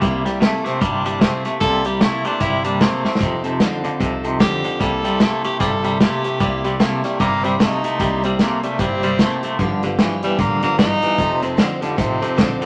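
Rockabilly with a rollicking, upbeat mood, this excerpt moves at 150 BPM in a swung 4/4 in C mixolydian, riding a C7, F7 and G7 progression. A twangy, clean electric guitar with tremolo plays the riff up front beside a dark, punchy vintage drum kit with a rolled-off top, while a bright tenor saxophone carries the melody with vibrato from 0.3 seconds. A full-bodied picked steel-string acoustic guitar and a woody pizzicato upright bass sit in the background, a drum fill arrives at 3.0 seconds, and a moderate studio ambience surrounds the band.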